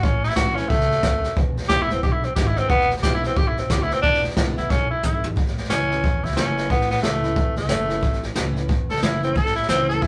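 Rockabilly with a retro, rowdy spirit, this short cut from a longer piece moves with a light swing at 180 BPM in 4/4 and A major, going from A to E7 and back. A breathy tenor saxophone carries the melody up front, its tone raspy and gritty with a vintage edge, and it takes a solo from 5.4 seconds to the end. Behind it, a picked steel-string acoustic guitar adds bright, fresh-string accompaniment, while a pizzicato upright bass with gut strings thumps along, woody and dark, in the background. The brush drum kit sits up front yet sounds roomy and distant, with a boomy kick, medium-tuned snare, hi-hat and toms, and a rolled-off top; a drum fill at 4.7 seconds leads into the solo. The whole take has the rough feel of a rehearsal-room recording, with moderate studio reverb lending a short tail.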